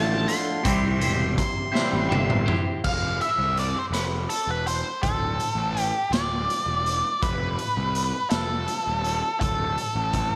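Psychedelic rock in a dark, trippy 6/8 at 55 BPM, this excerpt opens with an octave-fuzz lead guitar soloing in a distorted, slapback-echoed voice over a twangy, clean, phased guitar riff, a punchy, overdriven picked bass, and a soft, flute-like tonewheel organ whose chords shimmer with chorus vibrato and fast rotary speaker in the background. A raw garage drum kit enters at 0.3 s, gritty and saturated in a bright, pumping stone room, and its fill carries the music to 2.8 s, where the organ and twangy guitar stop and the lead, bass and drums carry on over a shift from Dm and C to F5 and D5. A moderate spring reverb hangs around the up-front instruments.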